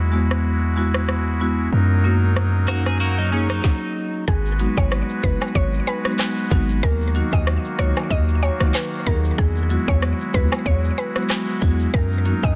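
A bouncy dancehall groove at 94 BPM in 4/4, swung on the sixteenths, drives this hypnotic G# minor piece cut from a longer track. An electronic island pop drum kit sits up front with a tight kick, woody snare, smooth hi-hats, handclaps, rim clicks and shaker, while a punchy, heavy 808-style sine bass with a noise layer anchors the low end. A soft-reed pipe organ holds sustained chords on an oboe stop with tremulant, pumping from sidechain compression, and an airy marimba with medium mallets plays accompaniment over the Eadd9, F#6, G#m7 and D#m changes. A bright, twangy twelve-string electric guitar adds clean picked arpeggios from 2.7 s, leading into a brief stop at 3.6 s. At 4.3 s a round, full-bodied FM synth pluck takes the melody with chorus and delay, as woodblock and cabasa tick quietly in the background, all within a dry, dense and heavily limited modern master.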